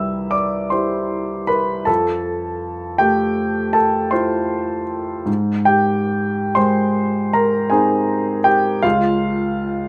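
Impressionist classical solo piano, luminous and serene, moves at a slow, rubato pace of around 44-56 BPM in dotted quarters, in a 9/8 metre. A clear grand piano plays alone throughout this short fragment, cut from a longer piece, spanning a range from C2 up to E6. Its tone is polished and intimate, sitting up front with long sustain, and the sound of the instrument's action is audible beneath the notes. The harmony drifts through lush colours, opening on Em7/C, shifting to Fmaj7 at 1.9 seconds and Abmaj7 at 5.3 seconds, before arriving on Db near the close. Light reverb lends the recording a gentle sense of space while keeping the piano present and close.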